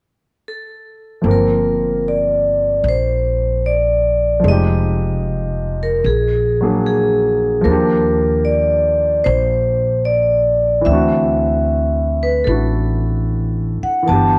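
A ringing, metallic vibraphone, struck with medium hard mallets and played with the motor off, carries the wistful melody of this melancholic jazz ballad in G minor, sounding alone from 0.5 seconds before piano and bass join at 1.2 seconds. The concert grand piano offers open, short-sustained accompaniment with a deep low end, while the upright bass, plucked on steel strings, sounds woody and growly with a touch of tube saturation, all three placed up front. At an unhurried 75 BPM with a gentle swing, the harmony moves from Gm7 through Fm9, Bbaug7 and Ebmaj9 to D9, set in a moderate echo chamber reverb with studio ambience, in this passage cut from a longer piece.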